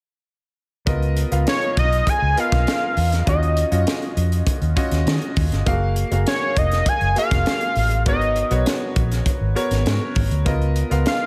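Breezy and upbeat, this short cut from a longer piece of polished 1980s jazz-funk pop moves at 100 BPM in a straight 4/4 through rich chords from C#13 to D#m9, F#maj9 and G#m11, with little room reverb. A crisp fusion drum kit with a high-tuned snare, punchy kick and gated reverb sits up front beside a dark, round, foam-muted fingered electric bass, while a clear concert grand piano with long sustain and a subtle chorus fills in the accompaniment from 0.9 seconds. At 1.5 seconds a fat, detuned sawtooth analog lead with a sub octave, vibrato, chorus and delay enters to carry the melody in a high register.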